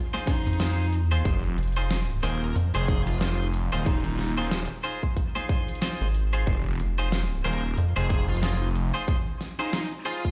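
Played back through a big sound system in a bare stone room, this swaggering, funky glitch hop fragment at 92 BPM sits on a single Fm7 chord in F minor pentatonic, with a 16th-note swing. An overdriven, punchy electronic kick sits up front beside a dubstep kit of deep snare and metallic hats, while a rubbery, nasal square bass (from 0.5 s) and a swirling, thick phased saw bass (from 1.3 s) fill the low end. Above them, a bright, twangy clean electric guitar plays stabs through spring reverb, sidechain pumping and dub echo, and a distorted high-gain lead guitar carries the melody with its own dub echo.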